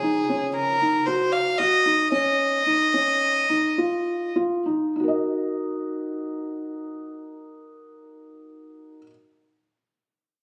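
Contemporary chamber music in an uneven 5/4 meter, this pensive, hypnotic fragment of a longer piece gradually slows through its opening seconds. A close, reedy violin with a gut-string, period-style tone carries the melody over a dark, thick-felt upright piano playing intimate arpeggios through Ebm7 and Dbadd9 harmonies. The violin stops at 4.3 seconds, leaving the piano alone until 9.1 seconds, all captured on a phone in a room with club ambience and light reverb.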